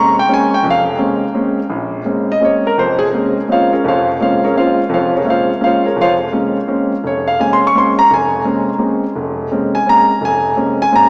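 Bathed in a wet church reverb with a small-speaker sound, this cool, hypnotic jazz excerpt in Bb minor sets a solo concert grand piano, intimate and up front with audible action noise, deep bass and long sustain, swinging in 3/4 at 169 BPM across a range from F1 to Db6, opening on a Bbm9 chord and running for 11.1 seconds.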